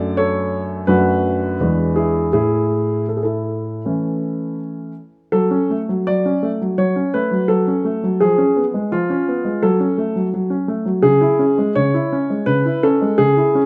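Loosely rubato and unevenly pulsed at about 83 BPM in 4/4, this cheerful, playful fragment of a classical-period piano sonatina features a solo baby grand piano, warm and open with long sustain and placed up front by close, detailed microphones in a moderate recital-hall reverb, moving from A major into F# minor at 5.3 seconds.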